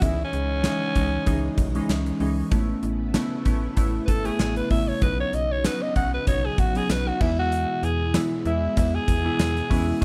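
1980s-style pop in E major at 96 BPM with a light swing on the sixteenths, this uplifting, glossy excerpt is led by a raspy, gritty alto saxophone solo carrying the melody up front with slapback echo over chords moving from C#madd9 through Aadd9 and Badd9 to E. Glassy digital keys with chorus, a snappy FM bass with a metallic attack, and a very quiet, lush string machine holding sustained chords sit beneath a gated drum kit with a punchy kick, snare, hi-hat, crash, tambourine and bright cymbals. A woody marimba, also with slapback echo, slips in softly in the background at 9.7 seconds, all set in a light reverb.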